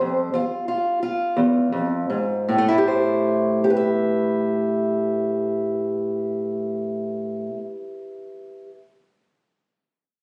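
A fingerpicked acoustic archtop guitar plays alone, up front and warm, in this mournful, soulful acoustic country blues excerpt in A minor, slowing in its opening 2.5 seconds over an E chord before settling onto Am9 at a slow 12/8 pulse of around 52-62 BPM, ranging from E2 to E5 under light reverb and the compressed sound of a phone recording in the room.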